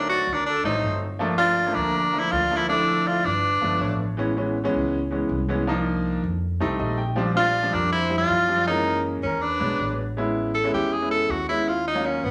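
Sunny and sophisticated, this straight-feel jazz excerpt sets an edgy, forceful tenor saxophone melody alongside a breathy, chiffy flute second line, a clear, polished grand piano with audible action noise that adds fills around 3.6 and 6.6 seconds, and a woody pizzicato upright bass, all in a large studio reverb, before the saxophone takes a solo from 10.2 seconds over rich extended chords.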